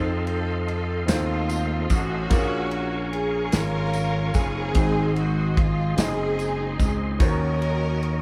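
A lush, intimate band sound in a moderate room carries this jubilant, soulful slow gospel excerpt in 6/8 at 49 BPM, where a bowed string section with vibrato sings the melody over a woody upright piano in the background, a tonewheel organ holding sustained chords through a fast rotary speaker with key click, a growly overdriven slap bass up front, a punchy acoustic drum kit of kick, snare and ride entering at 0.3 seconds, and a jingly tambourine from 1.1 seconds, moving through F7, Bbm7, Ab7 and Ebm7.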